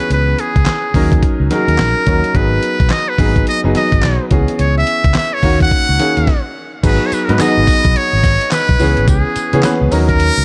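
Bouncy and slick, this new jack swing R&B excerpt moves at 107 BPM in G# minor, its sixteenths swung at 62 percent for a strutting 4/4 groove under a dark production with light reverb. Up front, a trumpet with a metal mute carries the melody between G#4 and F#5, its brilliant, buzzy tone thin and soft in attack, shaded by a delay and phrased in a jazz solo style. A clear concert grand piano sits equally forward in accompaniment, natural and slightly worn with deep low notes and short sustain, moving through minor seventh chords on C#, D# and G#. The dusty sampler-style kit is compressed and gritty, pairing a thumpy kick and fat snare with hi-hat, handclaps, tambourine and crash cymbal, while a round, punchy fingered electric bass enters at 0.1 seconds and ranges from F#1 to C#3. A brief stop from 6.3 to 6.8 seconds sets up a new section that returns to G#m7 and runs to the cut at 10.4 seconds.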